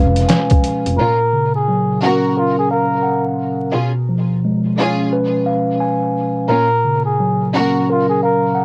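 Hazy, crackling home-cassette sound in a snug booth frames this soulful, nostalgic boom-bap hip-hop fragment in F# major at 87 BPM, swung on the 16ths. A mellow tine electric piano sits up front through its built-in speakers, joined briefly by a woody, growly pizzicato upright bass and, from 0.2 seconds, a muffled, pitched-down sampler kit with a thumpy kick. At 1.0 seconds a veiled, breathy cup-muted trumpet takes the jazz-style solo melody with light vibrato over F#maj7 and C#7, while a lush bowed string section adds tape-echoed stabs.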